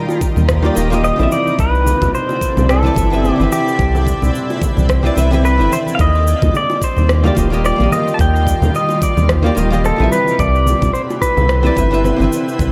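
The pedal steel guitar, twangy and up front with analog delay and volume swells, carries a blissful melody over a dark, clean hollow-body jazz guitar and a shimmering, ethereal pad from the start of this relaxed sunset chillout excerpt, moving at 109 BPM with a light sixteenth-note swing over chords from Ebmaj9 to Cmaj9 and Ebadd9. Within the first half second an electronic cabasa, rim click and congas with tape echo, distant acoustic bongos and congas, and a knocking electronic kick drum enter, and the round, deep analog bass arrives at 0.4 seconds, sitting prominently at the front. The mix is echo-heavy with light reverb, giving the whole a soft, floating sheen.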